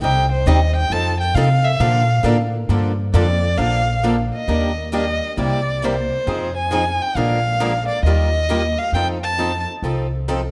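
A lively swing pulse at 134 BPM in 4/4, with swung eighth notes, drives this short cut from a longer piece of acoustic string swing in the jazz manouche style, set in Bb major. The upright bass anchors the low end with a woody, dark, thumpy pizzicato tone from gut strings, sitting up front alongside the violin. Two picked acoustic guitars share the accompaniment: a bright swing-style guitar with audible finger squeak, and a boxy parlour steel-string with fresh strings. The bowed violin carries the melody with a soft attack, vibrato and expressive portamento, taking a featured solo over the first 3.6 seconds. The harmony then moves through Ebmaj7 and C7 toward a closing F7, and the violin stops at 9.6 seconds as the rhythm section finishes the phrase, all within a moderate recital-hall reverb.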